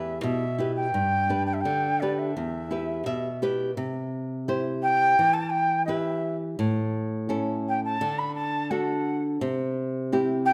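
Andean folk in E minor at 85 BPM in a straight 2/4, this melancholic yet festive passage, cut from a longer piece, puts an airy, reedy large quena with vibrato and soft attacks up front over a fingerpicked flamenco guitar whose finger squeaks come through close, detailed microphones, the guitar adding a brief fill from 2.7 to 3.8 s as the harmony moves through Em, G, C, A and D in a moderate recital hall reverb.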